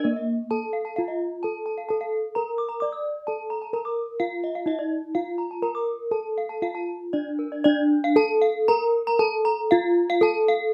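A straight 4/4 pulse at 116-130 BPM drives this shimmering, hypnotic gamelan passage, cut from a longer piece and tuned to A4 = 444 Hz. A full, up-front bronze metallophone struck with a wooden mallet carries the melody through close, detailed miking and a touch of plate reverb. Above it, a quieter, bright and airy second metallophone played with a horn mallet spins arpeggios, both instruments ringing with the beating shimmer of paired tuning in a moderate studio room, and the music moves into a new section at 7.6 seconds.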